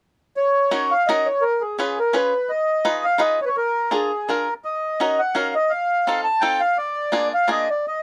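Musette in Eb minor at 169 BPM in a lightly swung 3/4, whirling and bittersweet, with a reedy, slow-beating accordion up front carrying the melody from 0.4 seconds over a bright, twangy, fingerpicked banjo accompaniment entering at 0.7 seconds, all in close, detailed sound with light reverb as the chords turn from Ebm7 through Db7, Fm7b5 and F7 to Bb7 in this brief cut from a longer piece.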